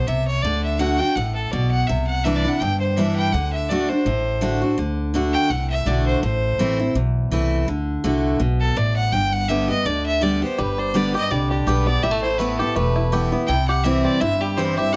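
This joyful, lively bluegrass excerpt opens with a clear, biting fiddle carrying the melody up front, bowed by a single player with light vibrato and set in plate reverb. Beside it, a bright, full-bodied steel-string guitar on fresh strings picks the accompaniment, also up front, while a woody, thumpy upright bass on gut strings plucks a dark low line from just after the start. The swung eighths give the quick 4/4 a buoyant lilt as the harmony moves through chords such as D, Cadd9, Am and G. At 10.6 seconds a mellow, twangy banjo, played with fingerpicks and touched by plate reverb, joins the melody with a percussive edge. The moderate studio ambience keeps the small ensemble sounding close and lively through to the cut at 15.0 seconds.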